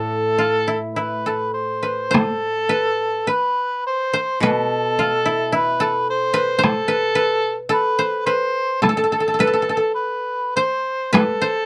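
Japanese traditional chamber music with a solitary, austere mood, this passage from a longer piece moves in a slow, uneven 2/4 with rubato phrasing. A dry, woody, fingerpicked koto carries the melody up front while a mellow, vintage-toned harmonica plays a second line with light vibrato and scooped notes, and a brighter low koto accompanies beneath them until 7.7 seconds. A taiko ensemble struck with heavy sticks enters at 2.1 seconds with a compressed, saturated sound up front, all captured by close, detailed microphones in light reverb.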